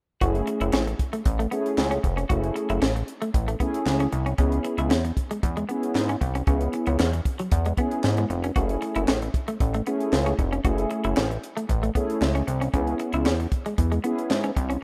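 Early-eighties boogie funk with a danceable, slick feel, this clip from a longer piece pairs a dry, up-front drum kit, with its tight kick, high-tuned snare, hi-hat and handclaps, with a glossy, nasal chorused synth bass carrying a filter pluck, while a dark, warbling, detuned synth brass and a clean, compressed semi-hollow guitar riff bathed in lush chorus move over F#m9 and C#m7 chords in a rough home demo mix with light small-room reverb.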